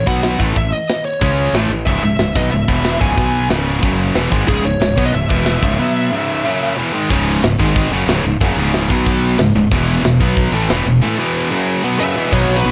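Heavy metal in C# minor at 184 BPM, this dark, aggressive excerpt from a longer piece opens with a dark, high-gain lead guitar melody with delay riding over two bright rhythm guitars, one overdriven and up front, the other distorted in the background, plus a growly fuzz-toned fingered bass and a tight, up-front drum kit of kick, medium-tuned snare, hi-hat and crash. At 7.1 seconds the music moves into a new section and a double-tracked distorted guitar riff joins. At 12.0 seconds the lead melody returns alongside a second, softer high-gain guitar line, all set in a small room with light reverb.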